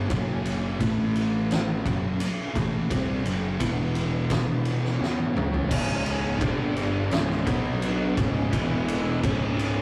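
A straight 4/4 pulse at 85 BPM is driven by an oversized, low-tuned acoustic drum kit sitting up front, its punchy kick and fat snare sounding gritty with a rolled-off top, and a drum fill from 5.0 to 5.7 seconds leads into a second section. Two dark, picked fuzz guitars grind out riffs in C# phrygian over a growly fingered fuzz bass, while a percussive tonewheel organ holds sustained chords through a slow rotary speaker with chorus vibrato and key click. At 5.7 seconds a bright, double-tracked overdriven guitar joins as the power chords shift from F#5, A5 and E5 toward C#5, G5 and B5, all in a rough, saturated rehearsal-room sound with a small-room reverb that keeps this brooding, ominous stoner-doom excerpt heavy and close.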